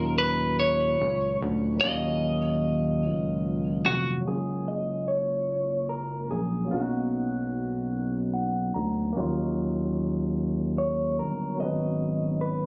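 A clean, picked electric guitar carries the melody up front over a barky, lightly overdriven tine electric piano with phaser, which adds a fill at 7.9 seconds, and a rubbery, hollow square-wave bass in this sultry, late-night slow six-eight R&B cut from a longer piece, heard through a phone in a club room with light reverb and a muffled, compressed sound.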